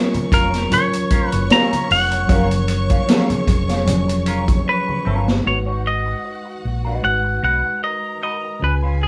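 A bright, clean semi-hollow electric guitar carries the melody of this silky, cinematic slice of lush 1970s-style soul at 76 BPM in G# dorian. A rich, bowed violin section with vibrato traces a second line, while a worn, slightly out-of-tune tine electric piano supplies mellow accompaniment over F#maj7 moving to G#m7. A twangy, slightly broken-up guitar through a small old amp plays a wah riff, and a round, dark hollow-body bass sits up front, all captured live in one room with moderate studio ambience. A vintage kit with a punchy kick swings on sixteenths alongside soft, distant congas; the congas stop at 5.3 s, and the kit ends at 5.4 s after a fill from 4.7 s.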